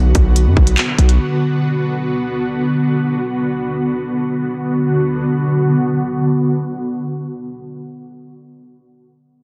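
Drill hip hop in free time and B minor, this dark, menacing excerpt opens with a punchy 808-style bass and a hard-clipped electronic drum kit of kick, handclaps and crisp hi-hat, both of which stop by 1.2 seconds. From the very start, an ethereal, airy pad of detuned unison voices with a sub octave carries sustained chords through to 7.6 seconds, its slow attack and long release shaded by ensemble chorus, built-in reverb and tremolo. A filter sweep runs across the first 4.5 seconds, and the dense, heavily limited master sits in light reverb.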